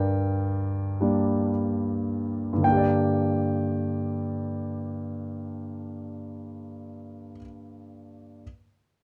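Classical solo piano in G minor: a dark, wistful fragment in a slow, rubato 6/8 at about 35-42 BPM, with an intimate, up-front concert grand of deep bass and audible action noise, smooth and vintage in character, playing from 0.0 to 8.4 seconds, slowing through its opening 2.6 seconds, and heard in a moderate studio reverb.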